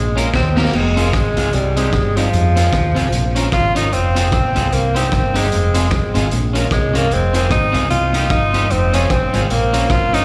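A clear, smooth-topped tenor saxophone with light vibrato sings the melody over a dark, round fingered electric bass from the start; at 0.2 s a twangy, slightly broken-up electric guitar bathed in lush chorus and a gritty, saturated garage drum kit join in, and a short drum fill from 0.3 s launches a driving, mischievous ska groove at 150 BPM in F minor with swung eighths cycling through Fm, Cm and Bbm, the saxophone carrying tape and slapback echo, the guitar slapback echo too, and the band heard as a live gig through the venue's PA with recital hall reverb in this cut from a longer piece.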